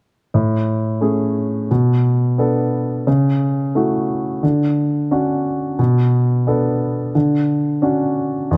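A warm grand piano sits up front with a short sustain, playing a folk accompaniment through seventh chords such as Amaj7, Bm7 and Dmaj7 in a nostalgic, intimate fragment cut from a longer piece, captured by close, detailed microphones with a touch of light reverb.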